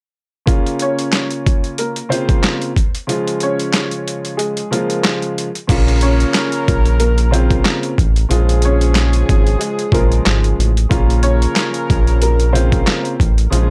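Dark and gritty, this boom-bap hip-hop excerpt in Bb minor rides a swung 92 BPM groove, where an overdriven, pitched-down sampler drum kit with a thumpy kick (muted from 3.1 to 5.7 seconds), medium-tuned snare, hi-hat, handclaps and crash sits up front beside a mellow, vintage grand piano accompaniment, while a worn, woody, slightly detuned upright piano carries the tape-echoed melody over Bbmadd9 and Db chords, and at 5.7 seconds a deep, round analog bass with transformer saturation and a tight, vibrato-laden horn section with stabs join for a dry, gritty hardware sound.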